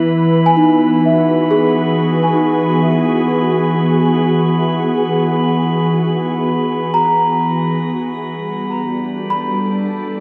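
Weightless and warm, this free-time ambient fragment in E lydian places a glassy, chorused FM pad up front beneath delicate, bell-like celesta arpeggios sent through analog delay and shimmer reverb, a very quiet string-like drone on E3 and an airy, beating glass harmonica tone on B5, all set in an echo-heavy chamber as the harmony moves from E to Gmaj7 at 8.3 s and the sound fades out from 5.2 s.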